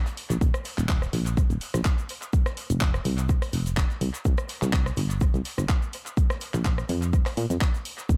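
A steady 4/4 groove at 125 BPM, with a light 54% swing on the sixteenths, drives this feel-good, joyful piano house excerpt, tuned to A4 = 435 Hz. The house drum kit arrives at 0.1 seconds with handclaps, hi-hat, rim click and shaker, its layered, tape-warm sound re-recorded in a large room and trailed by dub echo. Beneath it sits a damped 70s acoustic kit, very quiet and dry, adding hi-hat, shaker and a medium-tuned snare. The solid FM bass enters at 0.3 seconds, round and digital with a fast attack and decaying notes between Eb1 and Bb2, pumped by sidechain compression and placed up front. At 0.4 seconds the electronic kick drum lands, punchy and prominent, also re-recorded in a large room. The mix carries little reverb but leans heavily on echo, keeping the single section feel-good and joyful.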